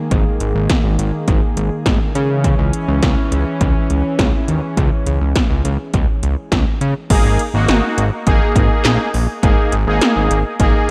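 A chorused analog pad opens this nocturnal, driving synth-pop excerpt with smooth, slow-blooming sustained chords, joined almost at once by a fat, saturated sawtooth bass and punchy 80s electronic drums with a gated snare, metallic hats, handclaps and crash, the kit carrying dub echo. The harmony moves from G#sus2 to C#m before the pad drops out at 7.1 seconds, where a bold, warbling analog synth brass with vibrato, chorus and dub echo takes over the accompaniment as the chords return to G#sus2. The mix is echo-heavy with light reverb, the bass, drums and brass all sitting up front.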